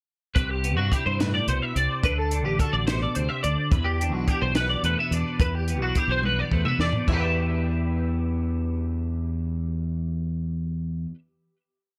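Restless and wistful, this short math rock and midwest emo piece in a straight 6/8 opens with a bright, twangy twelve-string electric guitar picking a high arpeggio ostinato through ensemble chorus and analog delay, while a second clean twelve-string rolls fingerstyle arpeggios beneath it over a Cmaj9, D7 and Em9 progression. Up front, a growling fingered electric bass with overdrive drives a punchy syncopated riff, and a compact cocktail drum kit with a high-tuned snare, dark rolled-off cymbals and china accents plays a 6/8 groove in a small, dry room. The kit ends with a drum fill at 6.2 seconds, and the guitars and bass ring out on a closing Em7 chord from 7.1 seconds.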